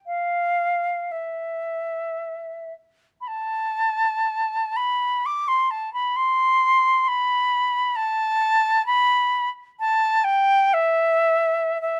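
Classical and mournful, this short excerpt from a longer piece features an unaccompanied silver concert flute in a free, rubato 3/4 at roughly 48-68 BPM, its airy, metallic tone with vibrato and tongued notes ranging from E5 to D6 under light reverb, captured by close, detailed microphones that place it up front yet leave a lonely, distant quality.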